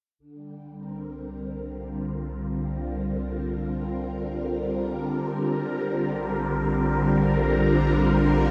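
Soaked in a vast, wet reverb with a tail of about 7.9 seconds, this dreamy ambient fragment, cut from a longer piece, floats in free time with a mysterious, expansive mood. A phased string machine sits up front, its bright, vintage sawtooth tone swirling through ensemble chorus and phaser as it holds slow-attack, long-release chords between D3 and Bb4. Beneath it, a round analog bass with a deep, nasal, dark character blends triangle and sine tones with a filter pluck, sustaining low notes from Bb1 to C2 further back in the mix. Both parts fade in together from 0.2 seconds and carry on through 8.5 seconds. The harmony rests on a C5 chord before shifting to Bb at 5.5 seconds, leaving the brief passage suspended and open.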